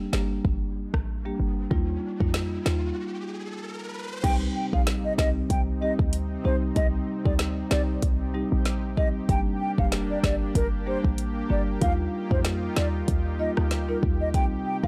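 An airy, hollow concert flute carries the melody from 4.2 seconds, its tongued notes shaded with vibrato and an analog delay, over a bouncy, tough dancehall groove with a light swing. Mallet marimba and a punchy, tight 808-style bass with a sine body and noise layer play from the start beside an up-front electronic afro-pop kit of deep kick, woody snare, metallic hats, rim clicks and crash, while an electronic riser sounds through the opening and a short break from 3.0 seconds. When the flute enters, a lush, thick, detuned sawtooth unison pad joins with chorus, tremolo and sidechain pumping, in a dry, gritty recording cut from a longer piece.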